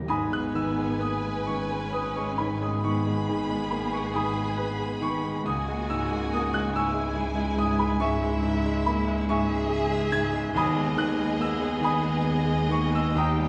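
A clear, up-front concert grand piano with a deep bass opens this brooding, tragic romantic movement for piano and orchestra in G# minor alongside a very quiet calf-headed timpani stroke, then carries the melody over a slow, rubato 12/8 pulse of 42-48 BPM as distant chamber violins sing a vibrato-rich line above, lush symphonic violins add a soft-edged second line, violas murmur in the background, very quiet cellos and smooth, far-off double basses anchor the bass, and the timpani returns at 10.6 s, all bathed in a wet concert hall reverb.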